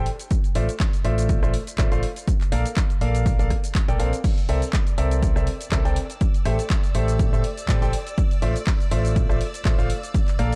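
Piano house at 122 BPM in 4/4 with a light swing on the sixteenths, this euphoric, joyful clip is cut from a longer piece and moves through Dm9/A, Bbmaj7, C13 and Am7 before returning to Dm9/A. A clear, intimate concert grand carries the riff across the whole stretch, its audible action noise and deep low end caught up close, with delay and sidechain pumping giving it a breathing motion. Underneath, an overdriven fingered electric bass sounds amped and punchy, also pumping to the sidechain, while a punchy analog-style electronic kick sits up front with its own overdrive. A layered garage kit fills in the groove with crash cymbal, handclaps, hi-hat, rim click and shaker. At 4.2 seconds a shimmering, vintage string machine with violins enters in the background, holding soft-attack sawtooth chords high in the register, thickened by ensemble chorus and sidechain pumping. The mix is dark and dry, with little reverb.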